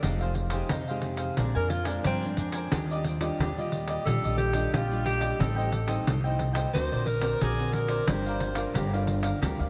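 Samba and choro at 90 BPM in a straight 4/4, this short excerpt from a longer piece feels playful and lively. A jingly pandeiro sits up front beside a woody, thumpy pizzicato upright bass on gut strings, anchoring the low end from F1 to G2. A crisp, picked cavaquinho and a dark, fingerpicked classical nylon-string guitar with subtle chorus fill in the accompaniment over a jazzy progression that opens on Fm9 and moves through Ebmaj9 and Daug7 before settling on Gm7. At 1.6 seconds a mellow alto saxophone enters with the melody, its subtone and light vibrato carrying a jazz-style solo touched with delay, heard distant and roomy until 8.8 seconds. The whole mix is soaked in a lush hall reverb, giving the lively groove a dreamy glow.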